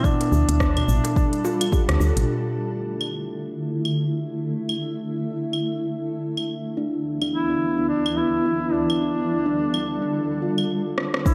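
Organic downtempo with a mystical, hypnotic mood at 107 BPM, swung on the sixteenths, this excerpt from a longer piece rests on a cloudy, evolving granular pad that sustains chords throughout with sidechain pumping, while a distant, roomy duduk sings a folk-style solo melody with vibrato and scooped notes, returning at 7.3 seconds, and a bright, ringing steel tongue drum struck with firm rubber mallets plays arpeggios through tape echo. The opening passage is driven by a deep, overdriven electronic kick, a round, woody FM bass, and a darbuka played with soft hands, all dropping out by 2.3 seconds, while an electronic kit of claves, smooth hi-hat, rim click and shaker carries on to a drum fill at 11.0 seconds. The production is dark, set in a moderate concert hall reverb.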